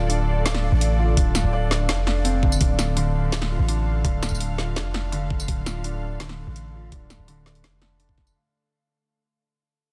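A deep, sine-toned 808-style bass sits up front beneath a heavy, dark half-time drum and bass drop cut from a longer piece, where a knocking, overdriven electronic kick enters at 1.2 seconds to join a drum kit of woody snare, bright hats and tambourine already playing, while a felt-muted upright piano with audible action noise plays boxy arpeggios through dub echo, a nasal, detuned string-like drone holds tense sustained chords with vibrato and sidechain pumping, and a chorused triangle texture pulses in the background, all in a digital ambience with a dense, heavily limited master that fades out from 2.6 seconds.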